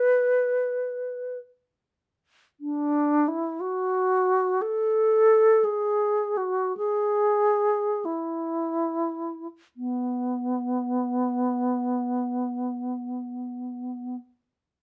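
An unaccompanied alto flute, pure and up front with soft attacks and expressive vibrato, carries this mournful, meditative classical excerpt in free time and B dorian, moving between B3 and B4 and slowing from 0.8 to 9.8 seconds before a closing passage that ends at 14.1 seconds, all in light reverb.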